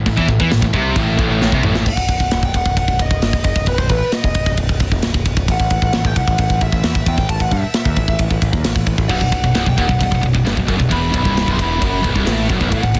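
Two bright distorted rhythm guitars, one of them high-gain, sit in the background alongside a growling, overdriven picked bass, opening this dark, aggressive heavy metal excerpt at 133 BPM in B phrygian dominant, with a tight, up-front acoustic drum kit of tight kick, medium-tuned snare, toms and bright china, crash and ride cymbals. A drum fill leads into a bluesy, dusky distorted lead guitar melody with digital delay at 1.9 seconds, as the rhythm guitars drop out. The bass carries on beneath the lead, and the rhythm guitars return at 9.1 seconds in a dense, heavily limited modern mix.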